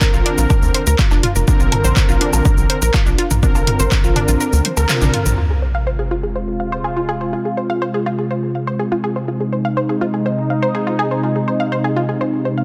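Hypnotic and dramatic, this melodic techno passage in F dorian moves at 123 BPM in a straight 4/4, cut from a longer piece. It opens on a Bbadd9 chord, with a punchy, tape-warm electronic kick sitting up front, an analog drum machine of handclaps, hi-hat, shaker, toms and woodblock pumping against it, and a tight, driving sequencer bass of sawtooth and square tones with a mellow, decaying pluck. Above them, a round, detuned analog pluck spins arpeggios through chorus and tape echo, while fat, warbling vintage synth brass stabs in with a filter sweep, also pumping with sidechain. The kick drops out at 4.4 seconds as a drum fill rolls in and the band hits an accent, leading to an impact at 5.4 seconds, where the drums, bass and brass fall away and an up-front sub drop lands. From there the harmony settles on Fm, and an evolving, resonant sawtooth-and-sine pad swells in slowly under chorus, sustaining alongside the pluck arpeggios in a dense, heavily limited mix with light reverb.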